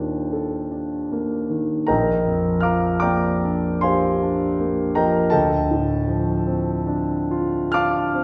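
A warm concert grand piano plays alone through this brief fragment of a longer impressionist classical piece, its deep bass and long sustain giving each chord room to ring. The mood is dreamy and serene, moving in a slow, rubato 9/8 at roughly 44-54 BPM counted in dotted quarters, in Bb major. The harmony drifts from Ebmaj7#11 to Bb6 at 1.9 seconds and settles on Dm7 at 5.3 seconds, with the writing spanning Bb1 to F6. The piano sits up front with an open tone, surrounded by the wet reverb of a recital hall or church that lingers for about 1.5 seconds. The whole passage lasts just over eight seconds.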